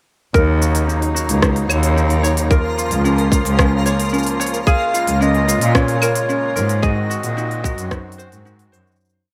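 This short, hopeful, pastoral folktronica piece opens at 0.3 seconds on a straight 111 BPM groove in 4/4. A tight, overdriven electronic kick and a clicking found-sound kit of crisp hats, claves, rim and shaker sit under a rich, bowed cello bass of long gliding notes, while fingerpicked ukulele rolls pass through a filter sweep and digital delay over a reedy, shimmering musette accordion pad. A twinkling granular texture holds a bright high note in the background from 1.2 seconds, a dark, smooth clarinet enters with a motif-based melody at 4.7 seconds over chords moving from Ebm7 through Bbm/Db and Db6 to Ab7, and a fade-out closes the piece from 6.1 to 9.0 seconds in a small, lightly reverberant room.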